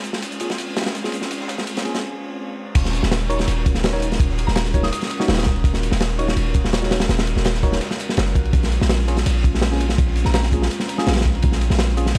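Drum and bass with a jungle edge, this atmospheric yet frenetic cut from a longer piece runs at 166 BPM in a straight 4/4, set in Eb dorian and tuned to A4 = 443 Hz. A crunchy, saturated breakbeat kit sits up front from the start, its tight kick, medium-tuned snare and dark crash and ride cymbals sounding gritty with a rolled-off top, while a second, very quiet kit adds smooth hi-hat and a high-tuned snare. An airy, breathy pad holds sustained chords in the background with a gentle chorus, moving from Bbm7 to Ebm7 and back to Bbm7 at 8.5 seconds, as a clean tine electric piano drops in stabs through a phaser, low-pass filter and dub echo. The drop arrives at 2.8 seconds, when a deep, boomy 808-style bass with tube saturation enters up front. A soft, pure FM bell traces brief melodic touches high above, colored by chorus and dub echo, all within a dark production under light reverb.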